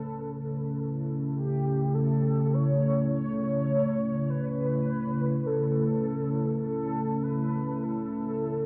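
A straight 4/4 pulse at 51 BPM underlies this desolate, dark ambient drone fragment, tuned to A4 = 444 Hz and cut from a longer piece. For its 8.7 seconds, a round, horn-like synth lead, thickened by ensemble chorus and dub echo, carries the melody up front over a sweeping, detuned, sub-octave resonant pad that sustains an Aadd9/C# chord with slow-attack chorus, all set in a wet plate reverb and an echo-heavy, cassette-tape mix.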